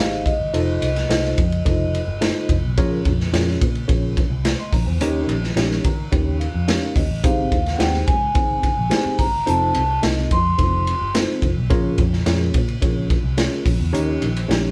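The recording has the live feel of a band playing together in one room, wrapped in a wet studio reverb. This is an uplifting, warm slice of uptempo 1960s-style soul at 108 BPM in a straight 4/4, cut from a longer piece and cycling through Abmaj7, F7, Bbm7 and Eb7 in Ab major. A raw garage drum kit sits up front with a boomy kick, a medium-tuned snare and dark cymbals, its gritty, saturated small-room sound pumping and rolled off at the top. A vintage muted picked electric bass gives a round, foam-muted, amped low end. A worn, slightly out-of-tune tine electric piano supplies mellow, clean accompaniment throughout and plays a fill at 5.6 seconds. Above it, a close-miked, dry vibraphone played with soft mallets and its motor off carries the melody in full, ringing, metallic tones, dropping out after the opening and returning at 7.2 seconds.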